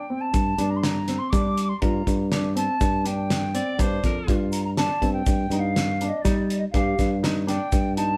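A mellow, hollow concert flute opens this tense, intricate progressive instrumental in 5/4 at 122 BPM in G minor, joined at once by dark, short-sustaining baby grand piano arpeggios, then by a growly, punchy fretless bass, a cloth-damped, thuddy drum kit with a fat snare, and a grainy tube shaker in the background, all moving from Gm7 to F7sus2 in a moderate room reverb, while a bright, smooth-topped alto saxophone adds a brief second line from 3.6 to 4.4 seconds in this cut from a longer piece.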